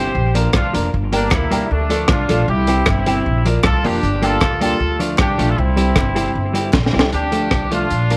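A driving, mischievous ska passage opens with a tight, vintage horn section carrying the melody up front over a woody, thumpy pizzicato upright bass, a clean, compressed electric guitar with tape echo, and smooth upright piano stabs in the background, before a gritty, saturated breakbeat kit with a punchy kick and high-tuned snare drops in at 0.4 seconds, joined by very quiet, crisp group handclaps, a drum fill at 6.7 seconds, and a moderate spring reverb lending studio ambience to the cut.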